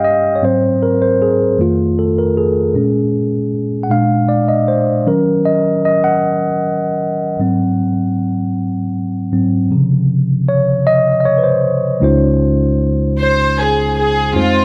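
Gospel in a lilting 6/8, this excerpt feels uplifting and soulful, moving at an unhurried, swaying pace. A mellow tine electric piano carries the accompaniment throughout, clean and up front. It plays alone for the first 12.0 seconds, spanning low bass notes to bright upper voicings. Its harmony passes through rich seventh chords, from dominant and minor sevenths to a settled major seventh, before opening onto a major ninth as a new section begins. At 13.2 seconds a studio string section takes the melody, bowed sul tasto with a soft attack and a pure, floating, close ensemble tone, touched by a slapback echo. A moderate plate reverb gives the sound a gentle sheen until the fragment breaks off at 14.6 seconds.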